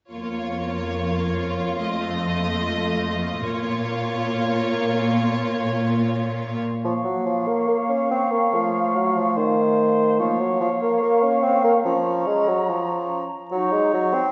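Urgent and restless, this dramatic, fast romantic orchestral passage in Bb minor at 144 BPM moves with a rubato feel, opening with bowed strings: a clear, intense violin melody with vibrato over a smooth second violin line, rich violas and an up-front, lush cello bass. At 6.8 s the strings give way to woodwinds, with a pure flute of crisp attack, a soft-attacked clarinet, a distant, roomy cor anglais and a prominent bassoon carrying the accompaniment. The whole is bathed in the wet reverb of a recital hall, its sound dark and rounded at the top.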